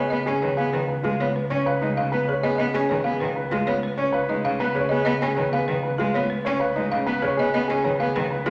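Minimalist classical pattern music in Db mixolydian, this hypnotic, bright excerpt moves at 97 BPM in a straight 4/4, resting on a single Db7 chord for its full 8.5 seconds. A folk marimba struck with medium hard mallets carries the melody between Ab4 and F5, its hardwood bars giving a woody, dry, rustic tone with a vintage, band-limited character. Beneath it, a grand piano plays arpeggios from Eb4 to Db5, sitting warm and up front in the mix. A single bowed cello supplies rich, focused accompaniment from Db3 to Db4 with vibrato, also placed close to the listener. A studio double bass section holds a low Db2 with smooth, even, lush bowing and vibrato, quieter than the other parts. All four play throughout, wrapped in a wet recital hall reverb that lends the pattern a spacious, resonant setting.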